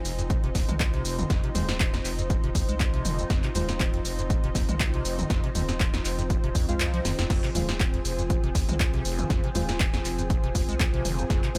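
Acid house excerpt in F minor at 120 BPM with a lightly swung 16th feel, driving and gritty, built on a punchy, up-front electronic kick that drops out briefly from 6.8 to 7.3 seconds and a tape-warm analog drum machine of snare, handclaps, hi-hat, shaker, toms and crash, re-recorded in a small room. A squelchy, resonant square-wave acid bass riff with overdrive and lush chorus sits back in the mix over a round, deep analog bass, while a thick, detuned sawtooth unison pad holds bright sustained chords and a lo-fi, ring-modulated tape-like pad adds nostalgic, reverb-soaked texture, all of these pumping against the kick. From 1.6 seconds a soft, vintage chord stab with a filter sweep, chorus and delay drifts in the background, and the whole track sits in a digital ambience.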